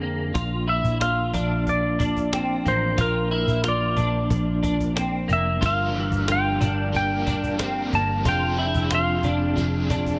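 A straight 4/4 pulse at 91 BPM comes from a snappy cajon with snares, entering at 0.3 seconds beneath a floating, dreamy dream pop excerpt in Bb lydian, while a round, foam-muted vintage electric bass anchors the low end and a soft, flute-like tonewheel organ holds lush chorus-vibrato chords with a hint of key click. A clean semi-hollow guitar spins picked arpeggios through ensemble chorus and digital delay, and an up-front, twangy lap steel carries the slide melody from 0.7 seconds, also trailing digital delay. At 5.6 seconds, as the chords move from Bb to Gm7 and later Fm6, a crunchy, double-tracked overdriven guitar slips in quietly with tremolo and analog chorus, all set in light reverb and digital ambience.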